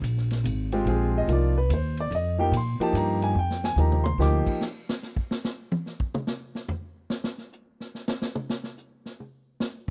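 A dry, close recording in a small room gives this short modal jazz excerpt an intimate 1970s studio sound, with every part placed up front. At 144 BPM in a swinging 3/4, the music sits in F Dorian and has a cool, hypnotic mood, opening on a single F9sus4 chord. A woody, pizzicato upright bass with steel strings plays from Ab1 to Bb2, alongside a clear grand piano whose action noise can be heard as it comps between F3 and D6. The vintage drum kit has a punchy kick, a medium-tuned snare, dark cymbals and a rolled-off top, and it plays a fill at 3.4 seconds. Bass and piano drop out around 4.6 seconds, leaving the drums to carry an unaccompanied solo until the clip ends at 9.9 seconds.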